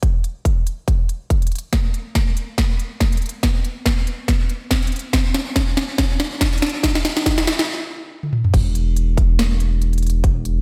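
A punchy, layered electronic kick and a trap kit with a sharp snare, crisp hats, crash cymbal and toms open this short future bass excerpt together, both sitting up front in a dreamy, reverb-soaked mix. The tempo is 141 BPM in 4/4 with a half-time feel and a 55% swing on the sixteenths, and the mood is bittersweet and dreamy. The opening is a build-up, with drum fills running through much of it before a stop at 7.7 seconds. The drop lands at 8.5 seconds, where a deep, thick, saturated sine sub bass enters on E1 with a fast attack and sustained tone, pumping under sidechain compression. The drums carry studio reverb while a lush hall ambience gives the whole piece its soft, floating glow.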